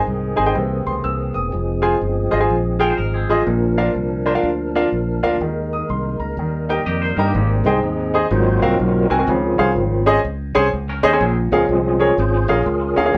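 A fat, lightly overdriven tonewheel organ with key click, chorus vibrato and a slow rotary speaker holds sustained chords and takes a solo from 7.3 s in this jubilant, soulful uptempo gospel excerpt at 124 BPM with a swung feel, joined by a clear baby grand piano, a punchy, up-front fingered electric bass and brief, clean, twangy electric guitar lines, all played live in a small, wet room.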